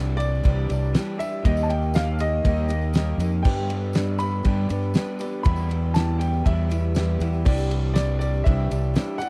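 A shimmering twelve-string acoustic guitar, a slightly broken-up electric guitar riff through a small old amp, and a round, punchy fingered bass open this warm, open-road folk and heartland rock excerpt at 120 BPM, joined at 0.2 seconds by a clear grand piano melody with tape echo, a dry 70s drum kit with a fat snare and tight kick, and a jingly tambourine in the background, while a dark, woody, slightly detuned upright piano enters very quietly at 3.5 seconds over chords moving from Cadd9 through Eb, G and Em in a small, lightly reverberant room.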